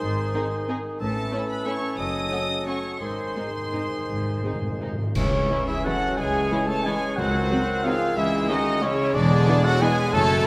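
In a rubato 3/4 lilt, this sweeping, dark orchestral ballroom waltz, cut from a longer piece, carries a floating, sul tasto violin section melody over cello and double bass sections, with a distant second violin section, an intimate viola section and a roomy bassoon beneath, while airy flutes, a smooth-topped clarinet, a mellow oboe and clear French horn chords fill out the middle; round calf-headed timpani play a fill from 3.0 s, and at 5.2 s trumpet stabs arrive with a crash of dark clash cymbals and concert bass drum, joined from 5.5 s by a barely audible trombone section, in a wet concert hall reverb.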